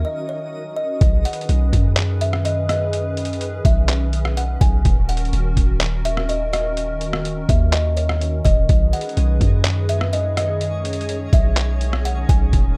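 Gritty, pitched-down sampler drums with a thumpy kick, handclaps, hi-hat and rim click enter up front at 1.0 s in this dreamy, blissful cloud-rap excerpt at 125 BPM in a half-time feel, joining a deep, boomy 808-style bass, a woody kalimba melody with digital delay, and a hollow, flute-like pad with ensemble chorus and sidechain pumping that have been playing from the start over D#m7 and B69 chords, while a twinkling granular texture sparkles in the background at the start and returns at 8.9 s.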